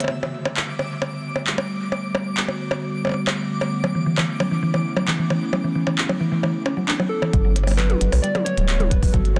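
A dense, heavily limited mix with light reverb frames this playful, wistful IDM fragment at 133 BPM in G lydian, where a warbling, nostalgic tape-like pad holds Gmaj9 and Bm11 chords under glitchy handclaps, clicky hi-hats, blips and toms with dub echo and a bright, twinkling granular shimmer, before a woody mallet-like pluck arpeggiates from 3.8 seconds and, at 7.3 seconds, a round, dark analog bass and deep electronic kick arrive just after lo-fi synth keys take up a mellow melody.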